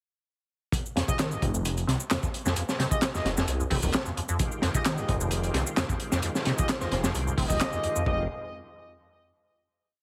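A crunchy, saturated breakbeat with a punchy kick and high-tuned snare drives this energetic, playful breaks piece from 0.7 seconds, topped by an overdriven machine layer of shaker and handclaps and grounded by a swirling, phased, detuned saw bass running a dub-style line under a rubbery acid riff full of accents and slides. Sparse, echoing chord stabs from a clear brass ensemble move one shape in parallel, while a thick, gritty tonewheel organ with slow rotary speaker and sidechain pumping slips in at 4.4 seconds as a background pad. A round, tine-like synth pluck offers a brief phrase near 6.8 seconds before a final chord closes the piece in a small room, with a heavily compressed, radio-like sound.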